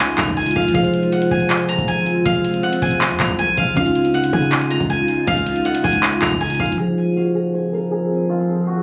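Melancholic and brooding, this half-time trap excerpt at 159 BPM in F phrygian sets a bright, silvery fingerpicked steel-string zither melody up front over mellow tine electric piano and a glassy, ethereal FM pad in the background, while a punchy, heavy 808-style bass and a booming analog drum machine with deep kick, metallic hats and handclaps drop out at 6.8 seconds as a filter sweep carries the final bars, all heard through a phone-recorded club reverb.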